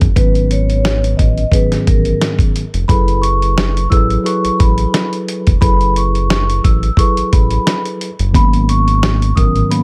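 A swung 88 BPM boom-bap groove in 4/4 drives this gritty, moody hip-hop excerpt in F# dorian, built on a compressed, sampler-style soul drum kit with a thumpy kick, medium-tuned snare and hi-hat, sitting up front with the grit of a small room. A deep, round analog bass with a fast attack and dark, sustained tone runs under a clean tine electric piano with a cassette-tape character, while a soft-mallet vibraphone enters at 0.2 seconds with a ringing, metallic melody, slow motor vibrato and tape echo. The chords move from G#m11 to F#m11 at 2.9 seconds and back to G#m11 at 8.3 seconds, all in a dry sound.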